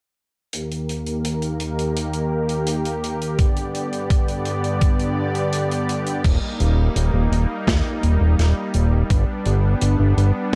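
Uplifting and nostalgic, this synthwave excerpt moves at 84 BPM in a straight 4/4, set in Eb major with a dark, warm production and a light, small-room reverb. A smooth, detuned supersaw holds sustained chords from the start, its soft attack pumping under sidechain while a low-pass filter sweep runs across it through the first section, shifting between Eb and G. An acoustic studio kit enters alongside it, with bright cymbals, hi-hat and a medium-tuned snare sitting back in the mix, and a thumpy, tape-warm electronic kick joins up front at 3.4 seconds. After a short break, the second section arrives at 6.2 seconds with a fat, nasal analog bass, saturated and detuned, pumping in step with the sidechain and sitting prominently beneath the chords. The harmony keeps alternating between Eb and G as the passage carries on toward its cut.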